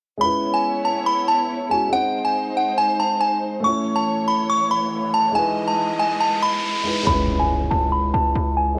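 A tinkling, bright FM tine bell with chorus carries the melody over mellow, deep grand piano and soft, woody bowed strings, all dulled by a cassette-tape haze in this menacing, dark half-time hip hop excerpt, until an electronic riser builds from 5.0 seconds and, as the strings stop at 7.1 seconds, an impact lands with a heavy, saturated 808-style bass, all in a lightly reverberant home cassette recording.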